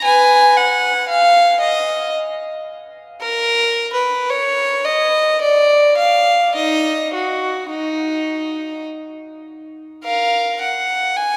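A lone bowed violin opens the recording at once, playing a grave, flowing baroque-style suite movement in Eb minor for unaccompanied violin. The tempo sits slow at around 51-58 BPM in 3/4, and the player shapes the time with a free, rubato feel. The tone is rich and reedy, with the gut-string character of period style, and the instrument sounds close and up front as it moves between Eb4 and Ab5. Around it hangs a long cathedral reverb, with a decay of about 4.5 seconds, that gives the performance the air of a church or concert hall. The passage is cut from a longer piece and ends at 11.4 seconds.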